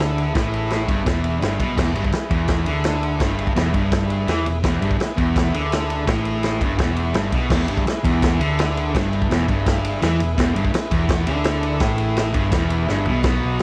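Garage rock with a rowdy, raw energy drives along at 168 BPM in a straight 4/4, centred on E mixolydian and cut from a longer piece. A bright, double-tracked fuzz guitar sits up front, playing a compressed, distorted riff that spans E2 to B3, while a hollow-body short-scale bass adds a round, dark, amped overdrive underneath. The vintage drum kit is punchy and mid-forward, with dark cymbals, a medium-tuned snare and a rolled-off top, roughened by a 12-bit sampler grit as kick, snare, toms, ride and crash push the beat. Further back, an overdriven combo organ holds reedy sustained chords with a light vibrato, and a moderate studio reverb places the group in a studio room. The first section gives way to a second at 7.5 seconds, which closes with a drum fill at 12.9 seconds just before the cut at 13.6 seconds.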